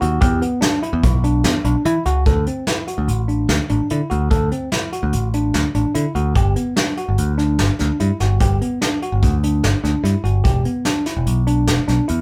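Driving and intricate, this progressive instrumental excerpt moves at 146 BPM in a straight 5/4, with a bright, bell-like tine electric piano spinning clean arpeggios over a picked electric bass that sits up front with a warm tone and soft brushed drums whose punchy kick, medium-tuned snare and hi-hat sound natural and close, all played live together in a small room with moderate reverb, as the opening passage gives way to a longer second section at 2.3 seconds.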